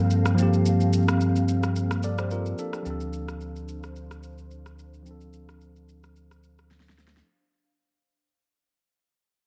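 A bell-like, clean tine electric piano opens this deep, soulful amapiano fragment over a glassy, ethereal FM pad with chorus, phaser and its own reverb, a full sine sub bass with octave, and a layered electronic kit of shaker, rim click and fat, tape-warm snare, moving from Gm11 to Dm7 in a dark production under a filter sweep and fade-out that runs throughout, with a drum fill arriving at 6.7 seconds.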